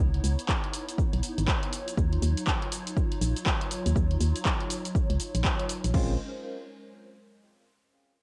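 An up-front, dark, organ-like FM bass with sidechain pumping drives this late-night deep house excerpt at 121 BPM in Bb phrygian, beneath a hollow, flute-like pad with ensemble chorus and cassette-tape warble sustaining Dbm9 and Ebm9 chords, a punchy analog drum machine of crash, handclaps, hi-hat and shaker with a swung 16th feel, an overdriven electronic kick entering at 0.5 s, and a bright, bell-like tine electric piano stab with tape echo arriving at 5.9 s over Bbm9, set in the digital ambience of a home cassette recording.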